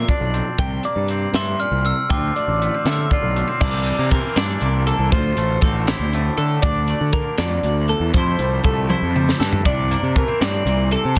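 A twangy electric guitar, a phased twelve-string electric guitar picking bright arpeggios and a fuzz-overdriven picked bass start together, joined at 0.1 seconds by a crisp fusion drum kit with a high-tuned snare, punchy kick and dark cymbals, setting up a restless, intricate math rock and midwest emo passage in 6/8 at 80 BPM. A glockenspiel struck with hard plastic mallets adds a sparkling, bell-like melody between 1.4 and 3.1 seconds. The chords move through Dm9, C9, Bbmaj7/D and Fmaj9, and a drum fill arrives at 8.9 seconds, all captured dry in a dense, heavily limited modern master.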